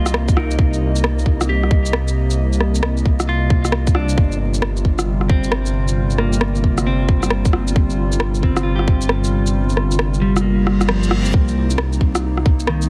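Future garage at 134 BPM in C minor with a swung 16th feel, wistful and rainy in mood, built on a Cm7 to G7sus4 progression and cut from a longer piece. A clean, picked electric guitar with digital delay and a warbling, lo-fi pad with chorus and built-in reverb pump along with a deep, rumbling detuned saw bass, while an up-front electronic rim click and shaker, its snare softly clipped, ride over a tight kick. The kick drops out from 9.6 to 11.3 seconds, and a reverse cymbal enters at 10.6 seconds to lead into the return to Cm7, all within a dense, heavily limited master dusted with vinyl crackle.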